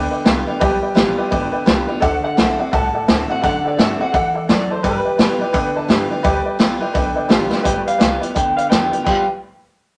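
Rockabilly at 170 BPM in 4/4 with a swung eighth-note feel, this retro, rollicking clip is cut from a longer piece. A jangly, detuned honky-tonk upright piano sits up front alongside a bright, full-bodied picked dreadnought acoustic guitar, while a woody, thumpy pizzicato upright bass on gut strings anchors the low end over a G7 to D7 and back to G7 progression. A vintage drum kit with dark cymbals, a medium-tuned snare and a punchy kick is the loudest part, mid-forward and up front in the studio room. At 2.2 seconds a twangy, slightly broken-up electric guitar through a small old amp takes the melody, and a drum fill at 7.5 seconds leads into a new section. Moderate studio reverb gives the sound some space, and lossy compression artefacts add a faintly degraded edge.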